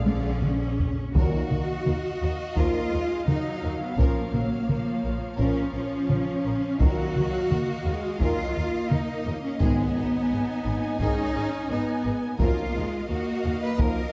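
Dark and roomy with a scoring-stage reverb, this epic, heroic orchestral film-score excerpt opens with a close, dry taiko fill at 0.1 s before vintage-toned trombones and soft-mallet timpani enter at 1.2 s, while a distant violin section carries the melody in the background over a lush, expressive second violin line, focused violas, a rich cello section up front, smooth double basses and very quiet, mellow French horns holding sustained chords alongside the trombones.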